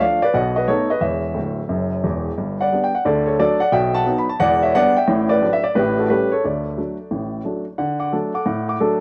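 Playful, swinging stride piano jazz played by a lone baby grand, its polished, present tone sitting up front across a range from the low bass to the upper register. A quick fill arrives between 1.4 and 2.4 seconds, and a new section begins at 7.8 seconds in this brief cut from a longer performance. The home cassette recording gives a dusky, rolled-off top, with a wet spring reverb and small-room ambience around the piano.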